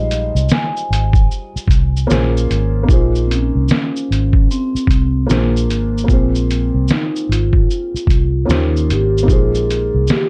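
Nostalgic and hazy, this lo-fi hip hop excerpt moves at 75 BPM in 4/4 with a relaxed 16th-note swing, set in Bb dorian under a dark production with light reverb. A soft-mallet vibraphone carries the melody across a range of Bb3 to Ab5, its metallic, ringing tone smooth with the motor off and trailed by analog delay. Beneath it, a felt-muted upright piano supplies intimate, mellow accompaniment. A foam-muted vintage electric bass sits up front with a round, amped sound. A pitched-down, compressed sampler-style kit of thumpy kick, medium-tuned snare, hi-hat and shaker enters at 0.1 seconds, muffled and tape-warm as if re-recorded in a small room. The harmony drifts from Fm9/Bb and Bbm9 into Bbm11 at 2.9 seconds, then through Bb7, Ab69 and Eb13 before settling back on Ab69.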